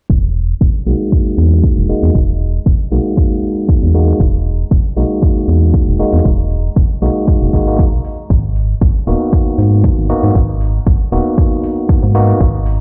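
A hollow, organ-like FM bass with a dark, percussive fast attack pumps up front through this deep, moody deep house cut at 117 BPM with a light 16th-note swing, starting together with an overdriven deep kick, soon joined by metallic overdriven hats set back in the mix and then barky, gritty tine electric piano stabs heard through a combo amp with delay, while filter sweeps move over the bass and piano and the harmony shifts from Emaj9#11 to G#m9 at 8.3 seconds, the whole mix sounding as if played on a big sound system in a bare room.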